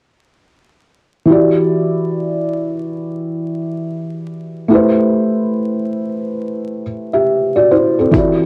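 Hazy and melancholic, this lo-fi hip hop fragment drifts at 70 BPM in E minor with a swung 16th-note feel, cut from a longer piece. A felt-muted upright piano, soft and dark with thick felt and audible action noise, sits up front from 1.3 seconds, moving from Em7 to Am7 through a low-pass filter and cassette tape coloring. Only at 8.1 seconds does a dusty, sampler-style drum kit, gritty and overdriven, slip in with a thumpy kick and hi-hat, all wrapped in a short studio reverb, home cassette character and vinyl crackle.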